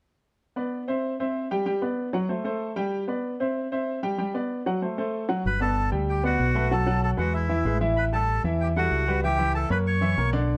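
Latin piece at a brisk 190 BPM in G major, festive and sunny, opening with a clear grand piano alone, its chords moving from Bmadd11 through C and Gmaj7. At 5.5 seconds a reedy, breathy melodica takes the melody with plate reverb, joined by a round, punchy electric bass up front, as the harmony turns toward E, C#m7b5 and F#7. A moderate studio reverb frames this short cut from a longer piece.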